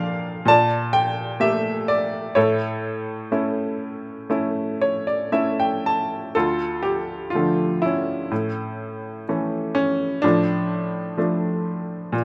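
A bright, woody upright piano plays alone and up front in this brief, melancholic and wistful classical fragment in D harmonic minor, moving with a rubato feel at 62 BPM through short-sustained chords from Gmadd9/Bb to A and back to Dm, ranging from D2 to A5 with a fill from 4.3 to 6.3 seconds before the opening phrase returns, all set in a light reverb.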